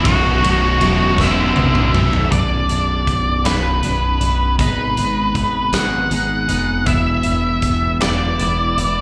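Quiet-loud alternative rock in B minor at a slow 53 BPM in 6/8, dark and brooding, cut from a longer piece and heard live through a club PA, where an up-front octave-fuzz lead guitar with slapback echo carries the melody throughout, a growling overdriven bass sits up front, and a big-room drum kit with a fat snare and punchy kick plays a fill from 1.2 to 2.3 seconds, while a biting overdriven guitar, a double-tracked distorted guitar and a very quiet thick fuzz guitar grind out a B5 riff before stopping at 2.3 seconds, when a compressed, clean twelve-string guitar with spring reverb enters with arpeggios through Bm, G#m and E.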